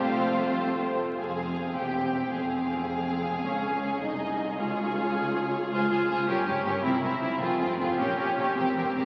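Cheerful and graceful, this quick classical-period movement for string orchestra moves in a lilting 6/8 at 106 BPM in F minor, cut from a longer piece and heard through the crackle of a very old 78 rpm record. Intense, distant first violins carry the melody in the background while a focused second violin line and smooth, even violas sit up front, over expressive bowed cellos and double basses, with every section singing with vibrato. A wet cathedral reverb gives the ensemble a lush, resonant halo as the harmony turns from F to darker diminished and dominant colours before the excerpt ends at 9.1 seconds.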